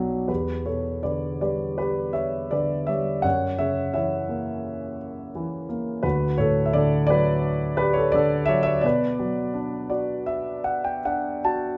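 Loose and rubato over an unhurried pulse, this bittersweet, cool fragment of lyrical classical solo piano features a dark, mellow concert grand with deep bass sitting up front in a moderate recital hall, drifting through Em7, F#7, Dmaj7 and Bm before a fill from 9.5 seconds to the cut at 11.8 seconds.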